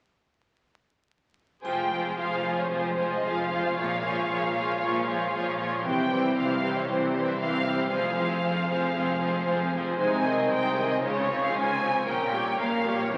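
Heard through the crackle of a very old 78 rpm record and a wet scoring-stage reverb, this fast, dramatic romantic orchestral passage in F minor surges at 115 BPM with an urgent, rubato feel, cut from a longer piece. Up front, a rich, lush violin section carries the expressive melody with vibrato over a smooth-topped second violin line and a clear, focused viola accompaniment, while a very quiet, ringing concert harp spins fingerpicked arpeggios across its range. An even cello section and a distant double bass section, soft in attack and sliding with portamento, anchor the bass in the background, and a faint triangle sparkles only from 1.6 to 2.7 seconds.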